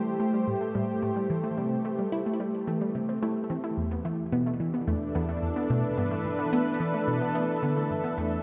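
Dark, warm production and a wet concert-hall reverb give this short fragment of ambient, sequencer-driven space music a mysterious, expansive air. A thick, detuned sawtooth pad sits up front with a slow attack and long release, holding sustained chords under a chorus sheen. Beneath it, a tight sequenced synth drives a riff in the low and middle register, its mellow pulse-wave and sawtooth tone shaped by a moving notch filter and carried by chorus and delay. A warbling, vintage-sounding unison pluck with a punchy, wave-folded edge adds quieter decaying arpeggios, trailed by echoes. All three parts play together for the whole fragment over a straight 4/4 pulse, as the harmony moves from Am7 to E7sus4 at 3.8 seconds.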